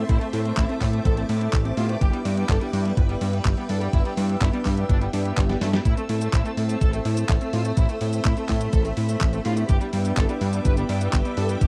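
A fat, saturated analog bass sits up front with a thumpy electronic kick drum in this bittersweet, danceable italo disco excerpt, cut from a longer piece. Above them, a rich chamber violin section carries the melody with light vibrato and a biting, earthy edge, touched by tape echo. A lush string machine holds sustained chords with ensemble chorus, while a very quiet analog pluck traces bright arpeggios and a dark, mellow synth brass adds chorused stabs in the background. A clean 12-bit drum machine supplies a fat snare, handclaps, hi-hat and cabasa, and a short drum fill arrives at 5.5 seconds. The chords move between A minor and G6, and the whole has a dry, close 1970s-style studio sound.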